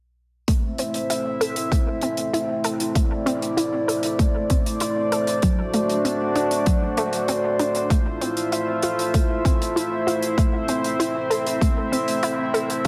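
A punchy, layered electronic kick drum sits up front in a straight 4/4 at 97 BPM, with an airy, polished acoustic hi-hat ticking quietly above it from 0.5 s to 12.9 s. This nostalgic, cinematic synthwave fragment in A minor, cut from a longer piece, moves through Am, D7 and Fmaj7 before returning to Am at 10.4 s. A shimmering, retro pulse-width pad holds sustained chords between A3 and E5, its slow attack and long release blending pulse, sawtooth and triangle tones with a sub octave, while sidechain pumping makes it breathe. Beneath it, a round, detuned analog pluck plays arpeggios from F#3 to A4, its fast attack and short decay coloured by chorus, cassette tape character and tape echo. A moderate recital hall reverb gives the mix a sense of space, and a faint mains hum lingers underneath.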